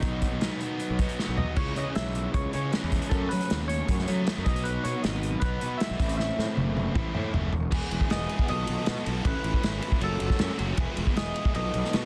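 A loose, up-front acoustic drum kit with a tight kick and a rolled-off top drives this carefree, upbeat indie rock excerpt at 156 BPM in E major, with fills at 1.2 and 6.2 seconds. A growly, punchy fuzz bass and a biting, double-tracked overdriven guitar riff fill out the low and middle, while a clean, fingered electric guitar carries the melody through lush chorus and digital delay. The chords move from B through C#m and F#m and an Am into Emaj7 and Amaj7 changes, all in a small room ambience with a dense, heavily limited modern master.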